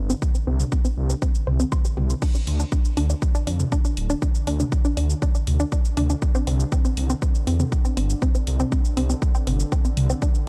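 Dark and dry, this brief cut from a longer melodic techno track at 120 BPM in 4/4 sets a cinematic, dramatic mood, with a punchy overdriven electronic kick up front, an overdriven house kit of crash, hi-hat, shaker and toms pumping against it, a menacing, saturated detuned saw bass swelling low, lush mellow unison pluck arpeggios running through delay and sidechain pumping under a filter sweep, and a very quiet, evolving analog drone on D3 shimmering with chorus beneath.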